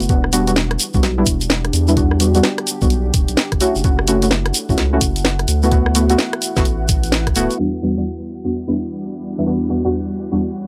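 UK garage in a two-step groove at 128 BPM, swung on the sixteenths and set in E dorian, this moody, late-night excerpt moves through Em9, F#m7 and D69 before settling back on Em9. A compressed, pitched-down electronic kick thumps beneath a tape-warm garage kit with a cracking snare, hi-hat, rim click and crash, its snare, hats and cymbals muffled by low-pass filtering, while a grainy, bright egg shaker sits close at a lower level. A thick, saturated sine sub bass pumps against the sidechain up front, and deep, mellow chord stabs with detuned, chorused voices and analog delay carry a filter sweep through the opening section. Far behind, a warbling, vintage ambient pad drifts with chorus and reverb, and after a band accent at 7.1 seconds the kick, kit, shaker and bass drop away, leaving the stabs and that pad as an ethereal, airy pad enters at 8.3 seconds with phaser and ensemble chorus under a second filter sweep. 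The whole recording has a dry, gritty hardware character with transformer saturation, a low-pass filter and only light reverb.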